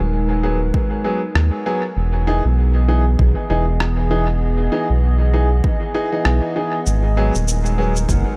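A round, deep analog bass sits up front, mellow and evolving under a warbling, detuned pad with a nostalgic lo-fi haze and chorus, while a bright, woody upright piano drops stabs into dub echo. This ambient dub excerpt moves at 98 BPM in 4/4 with a 16th-note swing, shifting from G#m7 to Emaj7 and back, and feels spacious and deep. A punchy, overdriven electronic kick enters at 0.7 seconds, joined at 1.4 seconds by a muffled, pitched-down rim click and shaker trailing echo, all set in a light reverb.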